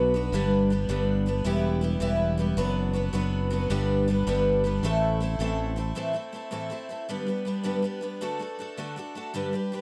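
Celtic folk jig in A dorian at 106 BPM in 6/8, spirited and wild, where a shimmering, octave-doubled picked twelve-string acoustic guitar with audible finger squeak carries the accompaniment through chords like G, Em, Bm/F#, Am and D while a punchy, direct fingered electric bass sits up front until 5.9 seconds, all captured with close, detailed microphones and light reverb in this brief cut from a longer piece.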